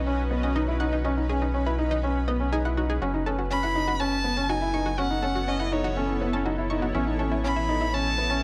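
A rich solo violin with vibrato enters up front at 3.5 s, carrying a bowed melody over a soft, felt-muted upright piano riff with tape echo, a round, deep analog bass, bright analog pluck arpeggios with chorus and tape echo sitting in the background, and a cloudy, evolving granular pad of sustained chords, all in a hypnotic, cinematic piano and strings electronica excerpt set in light studio reverb.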